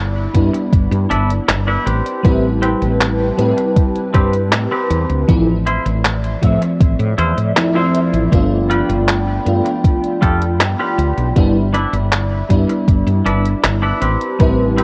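Vaporwave at 79 BPM, woozy and melancholic, this excerpt drifts through G6, Am9, Dm9/A and G7 chords, with a warbling, sawtooth-edged tape pad sustaining from the start alongside a round, woody fretless bass sitting up front. A lush, dreamy FM electric piano with a soft pad layer, chorus and tape echo joins at 0.3 s with a thumpy electronic kick and a detuned 8-bit drum machine of handclaps and hi-hat, both overdriven and re-recorded in a small room. A bright, clean semi-hollow guitar riff arrives at 0.5 s with 12-bit sampler grit and tape echo, and the whole mix carries worn cassette pitch drift and light digital ambience.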